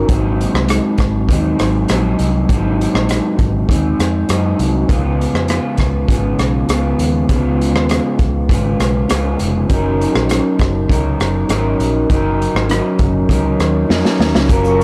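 Lonely and mellow, this excerpt of indie and bedroom pop moves at 100 BPM in a straight 4/4, tuned to A4 = 441 Hz, and moves through Ab7, Db7 and Gb6 chords. An up-front electric guitar at the edge of break-up carries the accompaniment with a dark, slightly broken-up tone, coloured by lush chorus and a warbly pitch drift. Beneath it, a vintage muted fingered electric bass sits low with a round, foam-muted, amped sound. The raw garage drum kit plays hi-hat, kick, rim click, shaker and snare in a small pumping room, sounding gritty and saturated with a rolled-off top and a punchy kick, and a drum fill arrives at 13.9 s. At 14.7 s a phased analog pad of detuned sawtooth tones appears briefly, swirling and airy, with phaser and chorus. Light reverb and transformer saturation shape the whole mix.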